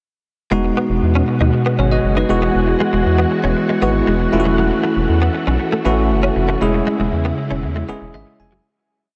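A bell-like, bright tine electric piano carries the accompaniment in this glossy, romantic pop piece at 118 BPM, pushing close-voiced chords with grace notes and short fills, over a rubbery, bouncy square-wave bass that plays a syncopated pop-funk line with slides and chromatic approach notes. A clean, compressed electric guitar picks a muted single-note riff through ensemble chorus and diffuse ambient delay, while a vintage, warbling organ-string pad holds mellow sustained chords under its own chorus. The whole short pre-chorus sits in a dreamy, reverb-soaked mix and begins fading at 6.6 seconds, with a final electric piano fill arriving at 7.9 seconds.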